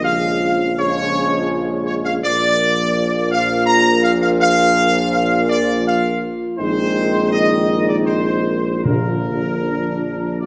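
A clear trumpet section carries the melody up front, its light vibrato ringing over a solemn, triumphant classical fanfare in Bb mixolydian, moving at 82 BPM in a straight 3/4. Beneath it, a dark, tight trombone section and a mellow, vintage-toned French horn section hold sustained chords in the background, while a warm, distant tuba anchors the bass on a low Bb. The harmony shifts from Db over Bb to Bb, then to Ab over Bb before settling back on Bb, giving the passage a stately, ceremonial weight. Near the close, at 8.9 seconds, timpani played with soft mallets add a round Bb. The ensemble sits in a wet recital hall, and this brief passage is cut from a longer piece.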